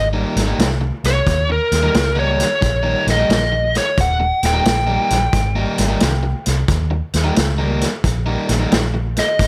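A bright, biting lead guitar with overdrive and plate reverb carries the melody up front over a dark, round, foam-muted fingered bass, a hollow-bodied overdriven semi-hollow guitar riff and a gritty, saturated vintage drum kit of hi-hat, tight kick and snare in this soulful, laid-back electric blues shuffle excerpt, set in a light reverb.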